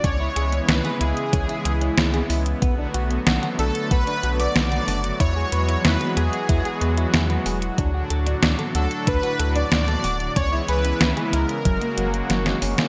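Bright 1980s-style digital production with a moderate plate reverb lends sheen to this nocturnal, driving synthwave excerpt at 93 BPM in B dorian, where a smooth, unison soft supersaw carries the melody through subtle chorus and delay over a bold, brassy analog pad pumping with chorus and tremolo, a clean electric guitar riff sits compressed in the background with its own chorus and delay, a round, deep analog bass anchors the low end, and an up-front, overdriven 8-bit drum machine snare and hi-hat with gated reverb play alongside a thumpy electronic kick, itself run through overdrive, that drops out at 11.8 s just before a drum fill at 12.3 s.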